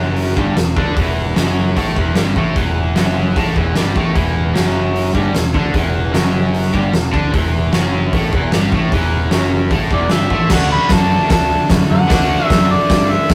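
Garage rock from a small band, raw and menacing, driving at 151 BPM in a straight 4/4 in E minor. A crunchy, double-tracked electric guitar riff sits up front, while a growling picked bass, overdriven and amped, digs into the low end. From 0.2 s an oversized, low-tuned acoustic kit pounds away with a boomy kick, fat snare, hi-hat and dark crash cymbals, its big room pumping and gritty. At 9.9 s a mellow, vintage-toned harmonica takes a solo with scooped notes and its own overdrive, and the harmony shifts from Em to D at 10.5 s. The rough rehearsal-room sound carries moderate reverb and a saturated glow, and the clip is cut from a longer piece.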